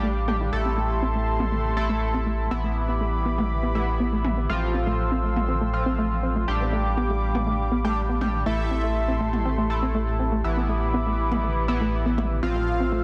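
A driving, melancholic melodic techno cut at 121 BPM in A minor opens on a rumbling, detuned saw bass up front under a moody, slow-blooming analog pad, a round chorused pluck arpeggio with a sweeping filter and delay, and edgy, nasal sync-sweep polysynth stabs with phaser, while tape-warm electronic toms enter at 0.3 s under their own filter sweep, and at 8.5 s a thick, gritty unison lead with dub echo and a smooth supersaw second line add brief melodic phrases over Am7, Em7/A, Fmaj7/A and G7/A chords, all set in a lush hall and a dense, heavily limited master.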